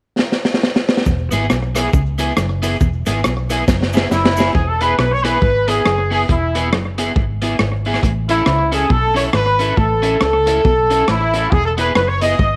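Light reverb and a small-room ambience frame this upbeat, joyful ska cut from a longer piece, with a swung eighth-note bounce. A crunchy breakbeat drum kit opens with a fill at 0.2 s, its saturated, gritty sound dark and rolled-off on top, with a punchy kick, a high-tuned snare, rim clicks and hi-hat sitting up front under a slapback echo. At 1.1 s the band arrives on E: a vintage foam-muted fingered bass, round and amped; a twangy, compressed clean guitar riff tucked in the background; and, from 1.3 s, a slightly broken-up picked guitar playing accompaniment through analog chorus and slapback echo. A grainy, bright cabasa adds close, dry texture with its own slapback echo during this opening stretch. From 4.1 s a warm horn section takes the melody up front with light vibrato and a smooth top, while the harmony moves to A and back to E.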